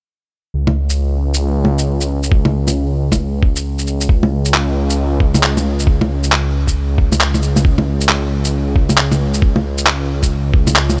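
A swung future garage groove at 135 BPM in 4/4 opens the recording, with electronic bongos, shaker and handclaps entering at 0.7 seconds, sampled, pitched down and muffled, sitting up front in the mix. A thumpy electronic kick drum joins at 2.3 seconds, also compressed and pitched down, giving the beat a heavy, cushioned weight. Underneath, a swelling detuned saw bass holds around C#2 from 0.5 seconds, its unison sawtooth and sine layers evolving through a filter swell with a fast attack and long sustain. Tube saturation gives the bass a gritty edge, and sidechain pumping makes it breathe against the rhythm, lending a menacing undertow to the nocturnal, wistful mood. The music shifts into a new section at 4.1 seconds, and the whole piece sits in a digital ambience, a fragment cut from a longer track.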